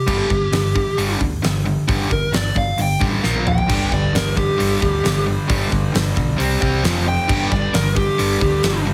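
Heavily compressed with a radio-ready sheen, this hard rock excerpt sits in light reverb and studio ambience, carrying a swaggering, anthemic mood. Up front, a dark, smooth lead guitar plays a solo melody through overdrive and slapback echo, while a huge arena drum kit with a fat snare, punchy kick and airy big-room polish drives beside it, kicking into a fill at 3.2 seconds. Behind them, a bright cranked stack guitar and an overdriven semi-hollow guitar with a mellower hollow-body tone play picked riffs in the background. A second bright stack guitar, double-tracked, joins the riff at 3.7 seconds to thicken the wall of sound. Underneath, a dark, round hollow-body short-scale bass, fingered and amped, anchors the low end as the chords move from G5 to Bb5, back to G5, then through C5 and F5 before returning to G5.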